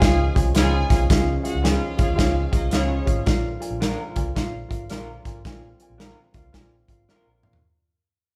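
Uptempo 1960s-style soul at 110 BPM with a joyful, danceable swing, this fading excerpt rides on a punchy, up-front drum kit and a dark, round, foam-muted electric bass, with a woody upright piano and a very quiet, lightly overdriven tonewheel organ with key click filling in chords, while a bright, vibrato-laden saxophone section sits in the background, a lush, distant bowed violin section drops out at 3.1 s, a slightly broken-up lo-fi electric guitar enters with spring-reverb stabs at 0.6 s, and a drum fill arrives at 7.1 s, all in a reverberant room where the band plays live together.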